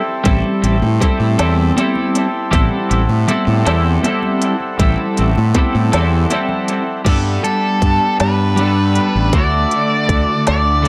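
A slow 6/8 pulse at 53 BPM, counted in dotted quarters with a straight feel, carries this dark, trippy psychedelic rock fragment in A dorian, cut from a longer piece. An electronic drum kit with a tight kick, woody snare, smooth hats and crash sits beside growly, overdriven fuzz bass played with the fingers up front, while very quiet, high-tuned congas with a thin skin patter softly until about 6.7 seconds. A bright, twangy twelve-string electric guitar, compressed and double-tracked, drives a picked riff through harmonic tremolo and dub echo, with a reedy vintage combo organ holding sustained chords in the background. The harmony rests on Am7 before moving to Gadd9 at 7.1 seconds and Dadd9 at 9.3 seconds. At 7.4 seconds a dark octave-fuzz lead guitar enters with a distorted, picked melody, its dub echo joining the drums and twelve-string in an echo-heavy mix with light reverb.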